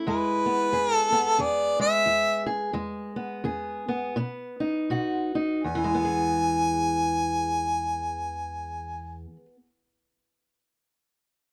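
A swung 4/4 lilt at 78-91 BPM, easing slower through the first 5.7 seconds, carries this soulful, laid-back acoustic country blues excerpt in E major, where a dark, woody, boxy parlour guitar with old strings fingerpicks the accompaniment up front while a warm, jazz-styled harmonica sings the melody with light vibrato, scooped notes and a smooth top, all set in light reverb and caught by close, detailed microphones.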